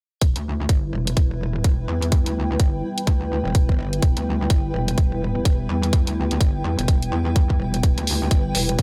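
Swaggering and gritty, this bass house excerpt rides a swung 126 BPM groove in E minor, resting on a single Em chord, with a tight, up-front electronic kick drum and a layered electronic hi-hat driving it from 0.2 seconds. A metallic, distorted wobble bass with FM bite and chorus sits prominently beneath a deep, moody analog pad of detuned sawtooth chords, both pumping against the kick. From 0.6 seconds a blurred granular cloud pad adds an evolving, reverb-soaked shimmer high above, all set in a digital ambience.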